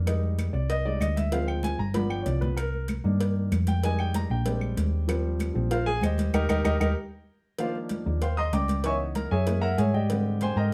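A polished, present grand piano takes the solo up front over a dark, round hollow-body electric bass in this sunny, lively Afro-Cuban jazz excerpt at 192 BPM, moving from Eb major to C minor at 7.6 s, while bright, saturated congas and woody claves sit in the background, a low-tuned cowbell sounds close and dry, drum fills land at 2.0 s and 7.0 s, and the band plays live in one room with moderate reverb.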